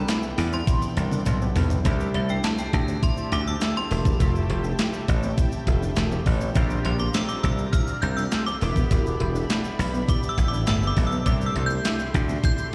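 Heard as a live gig through a venue's PA with recital-hall reverb, this smooth, danceable early-eighties boogie funk excerpt sets a metallic, inharmonic FM bell melody, treated with chorus, phaser and slapback echo, soloing from 1.9 s over a glossy chorused polysynth, a warm bowed string section in the background, a dark, very quiet electric guitar riff, punchy up-front slap bass, a thumpy, overdriven 8-bit drum machine with handclaps and a fill from 0.7 s, and a grainy, distant tube shaker, while chords move from Cmaj9 through Fmaj9, Bb69 and Em7.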